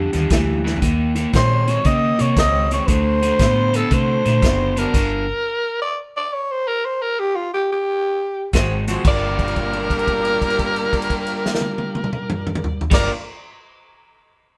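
Heard as a band playing live in one room with moderate studio reverb, this smoky, mournful electric blues shuffle in G minor swings at 117 BPM and is cut from a longer piece. A bright, overdriven guitar riff, a dark, foam-muted fingered bass and a roomy soul drum kit with a tight kick and medium-tuned snare carry the groove. A mellow horn section adds soft-attack stabs in the background, while a raspy, growling tenor saxophone leads up front with breathy subtone, vibrato and scooped notes, playing alone through the stop at 4.9 seconds until the band returns at 8.5 seconds, and a slightly broken-up slide guitar comes back as a quiet second line at 9.1 seconds.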